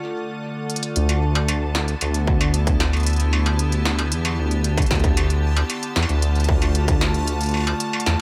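An eerie, intricate IDM excerpt at 114 BPM in a straight 4/4 opens on an icy glass pad, its crystalline, airy chords swelling in on a slow attack with chorus and built-in reverb, while an industrial drum kit breaks in at 0.7 seconds with a fill of clanging snare, smooth hats and struck metal soaked in tape echo. At 1.0 seconds a dark detuned saw bass arrives up front, deep and rumbling with a beating quality, and a bubbling stepped-filter texture sits in the background, its resonant sawtooth tone hopping through random filter steps and pumping against the sidechain. A distorted electronic kick drum enters at 2.3 seconds and drives the groove until 7.0 seconds, carrying a tape-tinged grit like the rest of the kit. The harmony moves from D minor to Em7 over a D bass, then returns to D minor, keeping the mood cold and uneasy. Light reverb gives the whole a modest sense of space as the passage is cut from a longer piece.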